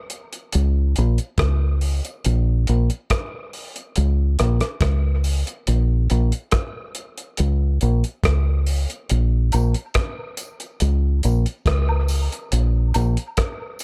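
A dry, echo-heavy mix opens this short cut from a longer dub reggae piece in Bb minor at 70 BPM, with a meditative, heavy mood. Up front, a cloth-damped, thuddy drum kit with a tight kick, hi-hat and rim click sits beside a dark, round, foam-muted fingered electric bass moving between Bb1 and Db2, the two carrying a break through 9.1 seconds. At 9.5 seconds a high-pass-filtered tambourine and woodblock slip in from the background, trailing dub echo.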